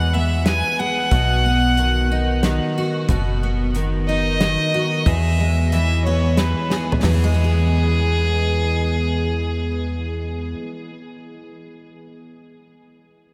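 A rich, focused fiddle with light vibrato carries the melody over a bright, full-bodied picked steel-string acoustic guitar with analog chorus and a snappy, metallic FM bass. This is nostalgic, sunny honky-tonk and classic country in 3/4 at 91 BPM in E major, moving between E and B. An airy, polished country drum kit with a punchy kick joins at 0.5 seconds, plays a fill leading into the second section at 7.0 seconds, and stops at 7.2 seconds, while a huge ambient reverb soaks the mix in a dreamy haze.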